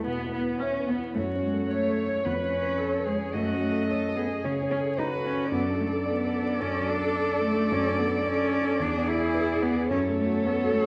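Classical-period piano quartet movement, lively and spirited, moving quickly yet with loose rubato in this short passage cut from a longer piece. The violin, warm and expressive, carries the melody with vibrato and portamento, while the viola adds focused, bowed accompaniment; both sit distant in the mix. A rich, soft-attacked cello sings a second line, and an up-front concert grand piano with a clear, worn tone and deep bass fills out the accompaniment, all set in a moderate concert hall reverb with a dark production and vinyl crackle.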